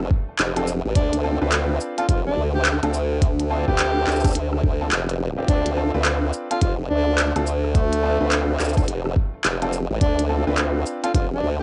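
Glitch hop at 106 BPM in 4/4, with a swung sixteenth-note feel and a swaggering, gritty mood, sitting in D dorian over a single Dm7 chord throughout this short cut from a longer piece. A formant-sweep wobble bass opens at 0.0 seconds, a saturated blend of pulse wave and sine with chorus and tube saturation, compressed and held up front. The glitchy drum kit brings handclaps, clicky hi-hats, rim clicks and shaker with a cassette-tape grit, joined at 0.1 seconds by a thumpy, pitched-down electronic kick that sits prominently in the mix, both re-recorded in a large room. A brilliant baby grand piano enters with stabs in the middle register at 0.6 seconds, intimate and long-sustaining with audible action noise, sidechain pumping and tape echo. From 1.0 seconds a tenor saxophone carries the solo melody in a classical style, its tone colored by cassette tape and tape echo. The whole has the light reverb and dulled top end of a home cassette recording.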